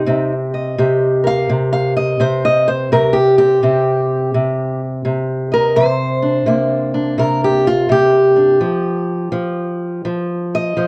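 A fingerpicked old ladder-braced acoustic guitar plays alone and up front for the full 10.9 seconds, its boxy tone ranging from C3 to F5. This is brooding, soulful acoustic country blues in C minor at 84 BPM in 4/4 with a swung eighth-note feel, resting on Cm9 before moving to Fsus2 at 8.6 seconds. Light reverb and a dark, warm production surround this brief fragment of a longer piece.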